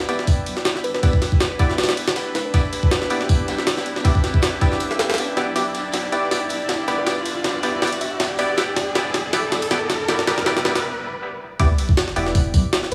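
Swung 16ths give this drum and bass and jungle fragment its shuffle, driven by an up-front, compressed, pitched-up sampler-style kit with a thumpy kick, high-tuned snare, hi-hat and ride in studio reverb. Beneath it, a very quiet breakbeat kit adds a dark, saturated, rolled-off layer of hi-hat, snare and tambourine until 10.8 s. The mood is nostalgic and dark, resting on a single Em7 chord: clear, floating bowed strings hold sustained chords roughened by vintage 12-bit sampler grit, while a nasal, detuned sawtooth chord stab, band-passed and bright, is coloured by chorus and dub echo. A deep, thick triangle sub bass sits in the background, and a bell-like, sparkling FM electric piano plays brief mellow phrases through chorus, cassette tape character and dub echo under a filter sweep. An electronic riser begins at 1.5 s as the build-up gathers into a drum fill and a short break, then a sub drop and impact mark the drop at 11.6 s, all set in a moderate echo chamber with small room ambience.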